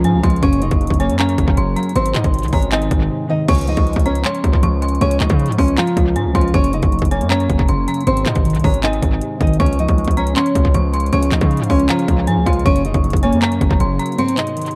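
A dark, thumb-plucked nylon-string guitar carries the melody through analog delay in this dreamy, triumphant half-time trap excerpt at 157 BPM in Db major, backed by an up-front trap kit with a hard-clipped kick, metallic hi-hats, handclaps and crash cymbal, a heavy, saturated 808-style bass, glassy digital keys with chorus set in the background, an eerie, warbling FM synth bell high above, and a very quiet, ethereal pad that drops out at 3.5 seconds and returns at 10.5 seconds, all in a dry but echo-heavy mix moving through Gb, Ab and Db.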